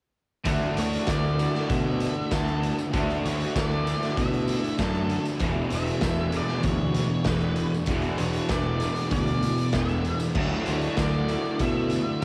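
At 0.4 s, a slightly broken-up, lo-fi electric guitar through a small old amp plays a riff in the background, colored by reverse reverb and cassette tape, alongside a very quiet, dark fuzz guitar. By 0.5 s the rest of the band is in: a bright, double-tracked semi-hollow guitar with overdrive and tape, a shimmering, woody twelve-string acoustic picking very quiet arpeggios, an overdriven fuzz bass, and an up-front garage drum kit. The kit's punchy kick, medium-tuned snare, hi-hat and crash sound saturated and gritty in a pumping stone room with a rolled-off top. This dreamy, wistful piece of shoegaze and dream pop moves at 97 BPM in a straight 4/4 in D lydian, shifting from Dadd9 to E7 and back. At 0.8 s an octave-fuzz lead guitar adds a distorted melody through analog delay and tape, while a jingly, close and dry tambourine sits tucked behind the band. The home cassette recording carries small room ambience, and the clip is cut from a longer piece.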